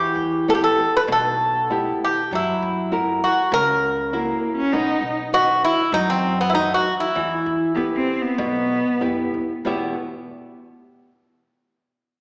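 Rubato in 4/4 around 98 BPM, this fado-style ballad in E harmonic minor carries a longing, passionate mood in a short passage cut from a longer piece. A Greek bouzouki sings the melody up front, its picked double strings warm and metallic, with some courses doubled at the octave, before falling silent at 9.0 seconds. Close beside it, a fingerpicked flamenco guitar supplies the accompaniment across a broad range, with an audible finger squeak, while an upright bass sits in the background with a woody, growly pizzicato tone. At 4.1 seconds a single bowed cello enters as a second line up front, warm and focused with vibrato and a smooth top. The harmony moves from Em through F#7 and B back to Em, settling on an open E5. A wet recital hall reverb places the players further back in the room, and the overall sound has a small-speaker quality.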